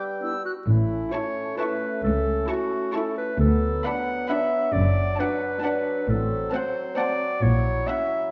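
A playful, whimsical cinematic film cue in a lilting triple metre, this short excerpt has a mischievous, magical air. A clear, close-miked clarinet sits up front throughout, carrying a second line in a classical style, while a silver concert flute adds a brief, pure, high touch only in the first half second. A distant French horn section holds sustained chords from 0.2 s, and from 0.7 s rich, smooth cello and double bass sections anchor the bass with bowed, even tone. At 1.1 s the upper strings arrive in the background: a lush, close violin section carries the melody, a focused symphonic violin section adds another line beneath it, and a soft-attack, expressive viola section fills the accompaniment. The harmony moves through colourful chords such as A/C#, D6 and F#dim/A, and the whole is bathed in the wet reverb of a scoring stage for a dark, warm production.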